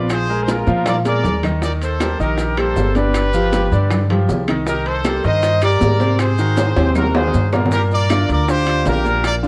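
A bright trumpet section carries the melody from the very first moment, up front with a tight, pop-style blend, light vibrato and soft attacks. Alongside it, a brilliant concert grand piano fills in the harmony with a natural tone and deep low end, while a dark, thumpy upright bass on gut strings sits close to the listener, plucked with a woody bite. This is a passionate, driving salsa excerpt, moving through Bb7, Ebmaj7, G7, Cm7 and Ab9 before settling on Gm7. Just after the start the percussion joins: ringing, high-tuned congas played with hard hands, metal-shelled timbales and grainy maracas sit in the background, while round, low-tuned bongos and woody claves are heard very quietly. Drum fills arrive at 0.7 and 6.6 seconds, and the whole passage is coloured by light reverb and a worn cassette-tape character with warbling pitch drift.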